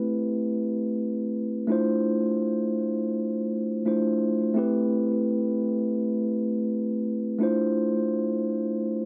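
Played in free time, this short hip hop excerpt unfolds as a solo for mellow tine electric piano lasting about 9.1 seconds. The mood is dark and tough, carried by an alternation between Am7 and Dm7 chords. The electric piano sits up front with a clean, warm tone that sounds as if heard through built-in speakers, staying within a modest middle register. Filtering trims both the low and high ends of the instrument, and a digital delay adds trailing repeats. The production is dark and warm, set in a wet studio ambience with a short reverb tail, and the passage is clearly cut from a longer piece.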